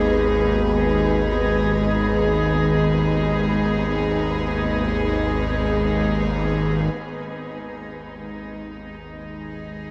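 Dark ambient drone in free time, this ominous, vast excerpt from a longer piece unfolds in a huge, echoing space with a long reverb tail. A string-like drone sits low and up front throughout, nasal and tense with vibrato and a slow attack, carrying its own reverb. Above it, a chamber cello section holds sustained chords for the full 9.9 seconds, earthy and rich with light vibrato, bathed in shimmer reverb. A breathy, wind-like tuned noise texture hovers in the background until 7.0 seconds, while a bronze gamelan-type metallophone rings out barely audible arpeggios through padded mallets before dropping out at 6.2 seconds. The harmony rests on G#m before settling onto a bare G#5 at 6.9 seconds, where the second section begins.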